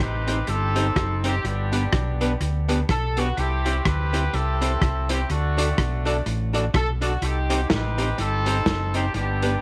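Ska at 125 BPM with a swung eighth-note feel, upbeat and joyful, cut from a longer piece and moving through Cm, G, C and D before returning to Cm. A clear, tight horn section with light vibrato carries the melody up front, colored by tube saturation and tape echo, while a round, punchy fingered electric bass sits low and forward beneath it. A vintage drum kit with a muffled, lo-fi small-room sound, tight kick, rim clicks and tape echo drives the groove, and a dark, clean hollow-body archtop guitar, picked and amplified, enters at 0.3 seconds to fill out the accompaniment under light reverb.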